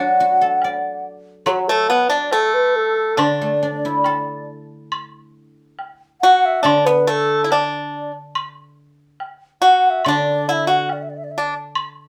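A mellow, airy end-blown bamboo xiao carries the melody from the start, its vibrato and soft attack sounding distant, while a bright, dry, percussive pipa plays a second line up front and a ringing, silvery guzheng accompanies beneath, both plucked with fingerpicks. A small-room woodblock joins at 0.6 s in this pastoral, festive Chinese chamber ensemble passage, cut from a longer piece and set in D gong mode at 70 BPM in a loose, rubato 2/4. Moderate studio reverb lends the ensemble a gentle sense of space.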